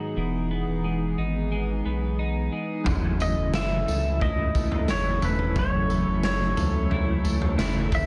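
A raw, gritty garage drum kit sits up front in this ethereal, melancholic dream pop piece, its punchy kick, snare, toms and tambourine arriving at 2.9 seconds as a filter sweep over the opening ends and the harmony moves from Emaj7 to F#m7. Beneath it, a hollow, flute-like pad holds sustained chords with chorus, a compressed twelve-string electric guitar plays arpeggios through tape echo, a round analog bass adds deep, sine-like low end, and a clean electric guitar with tremolo plays accompaniment in the background. From 3.2 seconds, a bright, twangy pedal steel played with fingerpicks carries the slide melody, heard in a small room with light reverb and a dense, heavily limited modern master.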